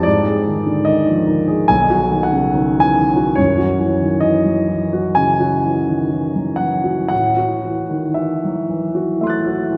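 Rubato phrasing in 4/4 lets this short excerpt from an impressionist classical piece for solo piano drift freely, its mood luminous and hazy. The concert grand sits up front with a deep, open bass, spanning B1 to A6 as it moves through Badd9 at 1.7 seconds, F#sus2 at 3.4 seconds and Am6 at 7.1 seconds. A dark, warm production places it in a wet church reverb with a 2.6-second decay.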